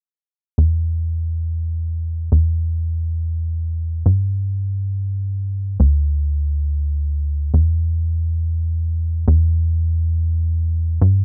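A tight sequencer bass carries this short trance excerpt in E minor, sounding alone from 0.6 to 11.2 seconds in free time and moving between D2 and G2. Its punchy, driving sawtooth and square-wave tone carries a ring-modulated edge and a filter pluck with a fast attack that decays into a mellow body, placed up front in a dry space with little reverb. The mood is bittersweet and soaring, with the tuning set to A4 = 439 Hz.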